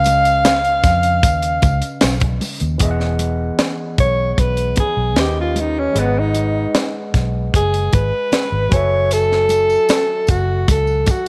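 Lush 1970s-style soul at 76 BPM in 4/4, this bittersweet, silky excerpt is led by a breathy alto saxophone, up front with vibrato, subtone and scooped notes, that moves into a jazz-style solo at 2.8 seconds over chords running from C#7 through Emaj7, D#7b13, G#m7 and F#m7. Beneath it, a gritty, barky tine electric piano runs through a combo amp, while a dark, round, foam-muted fingered electric bass and a tight funk drum kit with a high-tuned snare and punchy kick hold the groove. Very quiet congas sit close and dry, and a jingly tambourine appears only at the start and again from 9.1 seconds, all in a small room with light reverb.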